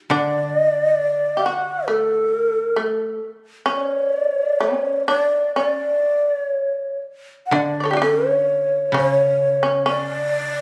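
This is Japanese traditional chamber music, austere and calm, unfolding with a free, rubato feel in 4/4. A bamboo shakuhachi carries the melody up front, its end-blown tone breathy and hollow, with straight, tongued notes, a touch of chiff on the attacks and lifted highs. Beneath it, a fretless shamisen plays a second line, plucked with a plectrum so its sound is percussive, buzzing and powerful, also placed up front. A koto gives low accompaniment, mellow, dry and woody under the fingerpicks. The three instruments sound together through this short fragment, with a second section arriving at 7.5 seconds, and the phone recording made in the room carries light reverb and studio ambience.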